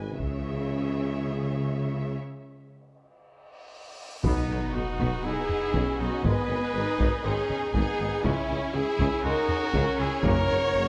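Triumphant and adventurous, this epic orchestral film-score passage moves at 120 BPM in a straight 4/4 in B major, cut from a longer piece. A dark, distant violin section carries the melody over a second violin line, with a focused viola section adding accompaniment, French horns holding sustained chords, and cellos, solo tuba and a smooth double bass section anchoring the low end, the violins, violas and cellos lush with vibrato. Close, dry taiko struck with hard sticks drive the rhythm, until a break at 2.2 s gives way to a huge, dark cymbal swell and sub drop. At 4.2 s the fuller section arrives with an impact: a very quiet, tight trombone section and a focused chamber string section hold chords, a clear, roomy solo trumpet plays stabs, and articulate timpani with hard mallets mark the arrival and return near the close. The harmony travels from C#m through B, G#m and C#m before landing on F#, and the whole ensemble sits in a moderate scoring-stage reverb.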